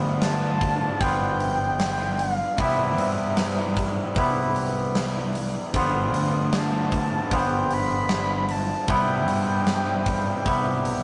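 A steady, straight 76 BPM pulse in 4/4 from a huge, up-front arena drum kit with punchy kick, medium-tuned snare and hi-hat carries this dreamy, wistful shoegaze and dream-pop excerpt in G mixolydian, where a growling overdriven bass, a twangy clean electric riff, a raw lo-fi garage guitar tucked in the background and very quiet shimmering octave-doubled twelve-string arpeggios circle G7 and Cmaj7 beneath a breathy, flute-like synth lead with chorus and vibrato that enters at 0.2 s, all caught in a rough rehearsal-room sound with a dull top end.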